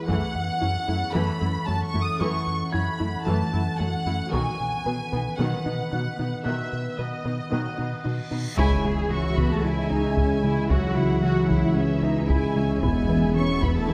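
This cinematic hybrid of orchestra and electronics opens with a symphonic violin section carrying the melody over a glassy, ethereal FM pad with ensemble chorus and its own reverb, and the mood is relentless and vast. Almost at once a dark viola section, a lush cello section, a soft round synth pluck playing arpeggios and a deep, wave-folded analog bass riff join in, with a concert grand piano adding a background texture through tape echo. A very quiet taiko ensemble with heavy sticks plays brief passages as the chords move from F#m7 to B. A huge, bright reverse cymbal from 8.1 s leads into a band accent and impact at 8.6 s, where the arrangement broadens. There a dark French horn section holds chords, a distant studio violin section adds a second line, and a mellow tuba, a punchy sub bass and a woody double bass section fill the low end. The whole piece sits in a moderate scoring-stage reverb, and it is cut from a longer work.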